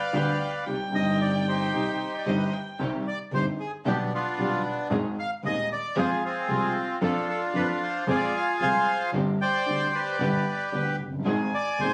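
Tango in C harmonic minor at 113 BPM with a tense, sultry rubato feel, this brief excerpt puts a reedy, mid-forward bandoneon up front carrying the melody in plate reverb, while a rich, distant violin adds an expressive second line with vibrato and portamento from 0.0 to 2.8 seconds and again at 11.3 seconds, a polished concert grand piano with deep bass and short sustain supplies accompaniment, a dark, woody studio string section plays lush bowed stabs in the background, and a biting, earthy bowed double bass holds the low end, all heard through moderate club reverb on a phone recording made in the room.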